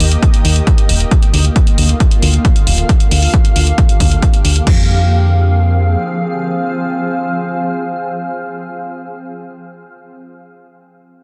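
This uplifting trance excerpt at 135 BPM in 4/4, in F dorian, feels soaring and euphoric, moving through Eb and Bb/D before settling on Fm. A shimmering, ethereal pad of detuned unison sine voices holds sustained chords with a slow attack and long release. Its octave-up shimmer, granular texture, chorus and built-in reverb give it a mellow glow, and sidechain pumping makes it breathe. Underneath, a round, dark FM bass with a fast attack and decaying notes also pumps, while a punchy, up-front electronic kick with a tape-tinged analog character drives the groove. An analog drum machine adds crash cymbal and hi-hat, both with sidechain pumping and the same small-room sound as the kick. The drums stop at 4.8 seconds and the bass at 6.0 seconds, leaving the pad alone in a digital ambience until 8.8 seconds, all under a dense, heavily limited modern master.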